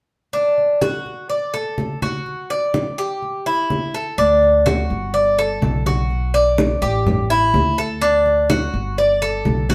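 Sunny and warm, this short excerpt from a longer Cuban son and guajira piece sits in a straight four-beat groove. The Cuban tres sits up front from the start, picking arpeggios on its metallic double strings, some of them octave-doubled, as the harmony moves from D through F#m and Dadd11/F# to A5. Low-tuned congas with a thick skin play alongside it the whole way, sounding warm and acoustic, as if in a small room. At 4.2 s an upright bass joins for the second section, its pizzicato gut strings woody and thumpy under chords that cycle through D, Gadd9, Bm7 and A5. The trio sounds like a band playing live together in one room, wrapped in a fairly wet studio reverb.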